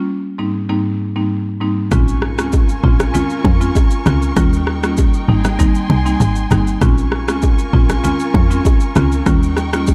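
A buzzing marimba struck with medium hard mallets opens this mellow, sultry afrobeats excerpt alone, its hardwood bars sounding dry, airy and up front through a break that runs to 1.9 seconds. At that point the rest of the band arrives: a produced electronic afro-pop drum kit with a deep kick, rim click and shaker, re-recorded in a small room and placed up front, alongside a punchy, percussive log drum bass with a fast attack, a decaying tone and a noise layer over its FM body. Congas and bongos, played with hard hands and captured close and dry, sit in the background. A studio string section holds expressive bowed chords with vibrato, portamento and a smooth top. The harmony circles through Abmaj7, Bbm7 and Eb7 in a straight 4/4 groove, all set in a dark, warm production and cut from a longer piece.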